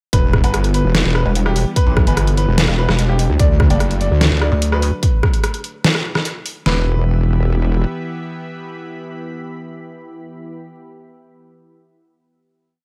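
Aggressive and menacing, this short heavy wobble dubstep piece moves in a half-time 4/4 feel and is built around a single drop that gives way to a final chord at 6.7 seconds. Two layered electronic drum kits sit up front, one carrying a punchy kick and deep snare, the other adding closed and open hi-hat, rim clicks and more snare, both with the roomy character of a large space. Beneath them, a saturated wobble bass of sawtooth and sine tones plays modulated phrases with changing wobble speed, its overdrive and chorus making it heavy yet mellow. A pulsing, detuned pluck wobble bass answers it from 0.4 to 4.9 seconds. A lush, thick unison pad of detuned sawtooth and square waves holds sustained chords in the background with chorus and sidechain pumping, while a brilliant, vintage-sounding grand piano repeats a riff melody through delay over the Em and D harmony. The piano and pad ring on together to the close, in a dry, upfront mix.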